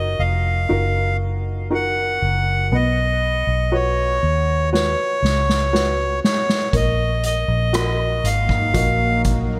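A reedy, clear accordion carries the melody of this tender, hopeful pop ballad excerpt over a mellow felt-muted upright piano and a dark, round vintage electric bass, with a soft-mallet drum kit entering with a fill at 4.7 s, its punchy kick and gated reverb sounding roomy and distant, and a shimmering, ethereal pad with chorus and phaser drifting in behind at 8.2 s, all framed by bright 1980s-style digital production and light small-room reverb.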